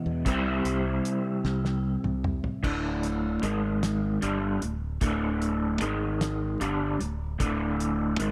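A trippy, hypnotic slice of psychedelic rock in a slow 6/8 at 50 BPM, cut from a longer piece. An electric guitar through a small old amp carries the riff from the very start, its picked tone slightly broken-up and swirled by a rotary speaker, sitting up front across a range from D2 to C5. A modern fingered electric bass joins almost at once with a bright, growly, direct sound down low, and a cloth-damped drum kit enters at 0.3 seconds, thuddy and dry, with a fat snare, tight kick, dark cymbals and a rolled-off top. A drum fill from 1.4 to 2.6 seconds leads into the second section, where the harmony shifts from C to a rocking alternation between D5 and G#5. Light studio reverb is applied to the whole mix.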